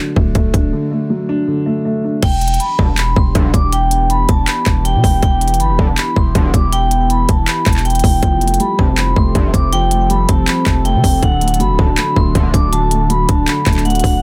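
An electronic trap drum kit sits up front in this dark, melancholic trap excerpt, its hard-clipped kick, crisp hi-hats, handclaps and crash cymbal driving a half-time feel at 160 BPM in E minor, tuned slightly low to A4 = 439 Hz. Beneath it, a heavy, punchy 808-style bass with a sine core and a noise layer strikes fast and decays. A dusky, boxy concert grand piano opens the passage on a D chord before a break at 0.7 seconds, then returns at 8.2 seconds as the harmony moves from Em7 to Fadd9 and back to D. From 2.2 seconds a vintage vibraphone played with hard mallets carries the melody high up, its metallic, ringing tone band-limited and trailed by delay. Further back, a warbly, nostalgic lo-fi pad of detuned sawtooth and triangle waves holds sustained chords with chorus and its own reverb, while an edgy, nasal polysynth with an oscillator-sync sweep adds brief, bright chorused stabs. The mix is dry, dense and heavily limited in a modern style.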